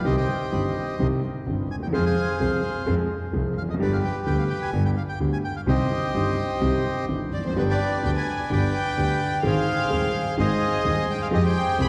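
A reedy, up-front bandoneon carries the melody in this sultry, passionate tango fragment. The rubato feel is supported by an intimate, vintage-toned grand piano with audible action noise and deep bass, and by a bright, distant bowed double bass with intense vibrato. At 7.3 s a warm violin section enters on a floating second line, played sul tasto with a soft attack, and the whole performance rings in the long, wet reverb of a church or concert hall.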